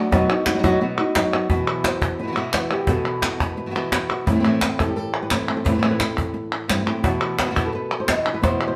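Flamenco at 173 BPM in 4/4 with a straight feel, this short cut from a longer piece burns with a fiery, passionate mood. One fingerpicked flamenco guitar carries the melody, ranging from G2 to D#5 with a dark, up-front tone, while a second fingerpicked guitar, warm with fresh strings, punctuates the music with stabs between A2 and F#4. A woody cajon with faint snares enters at 0.1 seconds, and crisp palmas hand claps join at 0.3 seconds, both compressed, saturated and placed up front. The harmony moves from B to Bsus4 at 1.5 seconds, shifts to Am, and returns to Bsus4. A stone room reverb lends the ensemble a wet space.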